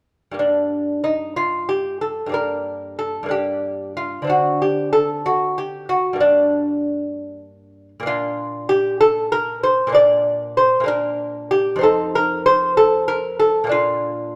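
In a 12/8 at 63 dotted-quarter beats per minute, played with free rubato, this brief excerpt of a grave, introspective baroque-style dance in G minor unfolds on solo lute from 0.3 to 14.4 seconds. The fingerpicked gut strings sound delicate and up front, with doubled courses and some octave-doubled strings enriching a span from F2 to D5 as the harmony moves from G minor through D7 and back before settling on B-flat. Close, detailed microphones and light reverb keep every pluck intimate, and the instrument is tuned to A4 = 439 Hz.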